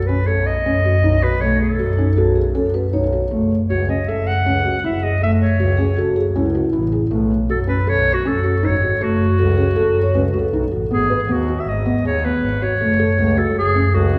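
Awash in the wet reverb of a concert hall or church, this urgent, restless chamber piece in F# dorian moves at 158 BPM in 5/4, with a clear, up-front clarinet singing the melody with light vibrato and scooped notes over a bowed double bass of nasal gut-string richness and a felt-muted upright piano whose dark arpeggios carry audible action noise, while a close-miked vibraphone played with soft mallets and its motor off adds a ringing, metallic second line from 2.0 to 10.9 seconds before the harmony shifts to G#m7 at 10.9 seconds in this fragment cut from a longer work.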